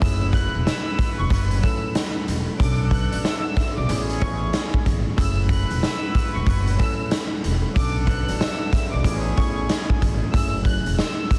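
A raw garage drum kit sits up front in this gritty, moody boom-bap hip-hop excerpt, its punchy kick, medium-tuned snare and hi-hat carrying a rolled-off top and the sound of a bright stone room at 93 BPM in 4/4 with a 62% swing on the 16ths. Underneath, a woody pizzicato upright bass holds the low end until 11.0 s, while a worn, slightly out-of-tune tine electric piano with a cassette-tape color lays down chords through F#m7, Bm7 and Amaj7 in F# minor. High above, a bowed violin section floats with a soft attack and pure tone, carrying the melody. A bright, punchy trumpet section with vintage vibrato adds tight stabs through a delay before dropping out at 10.0 s. The whole mix sits in a studio reverb with a dense, heavily limited modern master and a layer of vinyl crackle.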